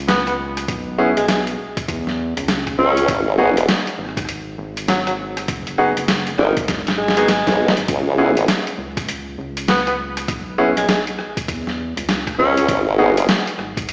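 This recording sounds as if it plays through a big sound system in a bare stone room, with a lush hall reverb, vinyl crackle and a small-speaker tint over the cut. It is a playful, funky glitch hop groove in a swung 4/4, taken from a longer piece and moving between C#m7 and G#7(no3) before the chords fall away near the end. A rubbery, hollow square bass sits dark and low beneath a gritty, pitched-down sampler-style kit of hi-hat, rim click and up-front snare, joined by a thumpy electronic kick, with a drum fill midway. A punchy tenor saxophone with vibrato carries the solo melody through digital delay, sounding distant and roomy, while clear baby grand piano stabs cut through with sidechain pumping and their own delay. An up-front formant-sweep wobble bass with chorus enters at 2.8 seconds, drops out at 8.5 seconds, and returns briefly at 12.4 seconds.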